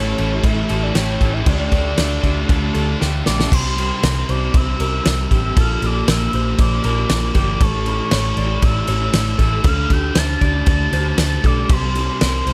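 A hazy, melancholic shoegaze and dream pop rock passage in D minor at 117 BPM opens with a soft, octave-layered synth lead carrying the melody through chorus, tremolo and digital delay, over compressed clean guitar arpeggios, a thick fuzz guitar riff briefly joined by a double-tracked distorted guitar and a twangy guitar in reverse reverb, and a round, foam-muted picked bass, while a loose indie drum kit with punchy kick, fat snare and dark cymbals enters at 0.2 seconds and plays a fill at 3.0 seconds before the distorted and twangy guitars drop out at 3.5 seconds, the whole mix sitting in studio reverb.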